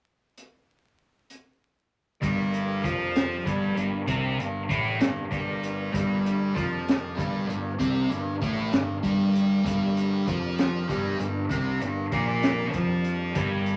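Crunchy, gritty breakbeat drums with a punchy kick and high-tuned snare open this trippy, hypnotic psychedelic rock excerpt in 6/8 at 0.4 s, and at 2.2 s a thick, double-tracked fuzz guitar riff with phaser enters up front over a G minor chord, joined by a round, overdriven fingered bass and a fat tonewheel organ holding sustained chords through slow rotary speaker and chorus vibrato in the background, all set in a moderate club reverb with vinyl crackle.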